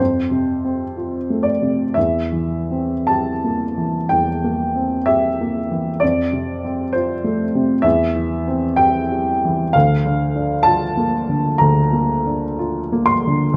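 Flowing in a rubato 4/4 at 51-67 BPM, this short fragment from a longer romantic nocturne carries a nostalgic, tender mood across its 13.6 seconds. A lone upright piano, woody and slightly detuned with audible action noise, sits up front and intimate, ranging from D2 to C6 as the harmony moves from F through C7/E, back to F at 6.0 seconds, then C/E and Bb/D. A moderate large-studio reverb lends the natural sound a soft halo, and the top end is gently rounded off.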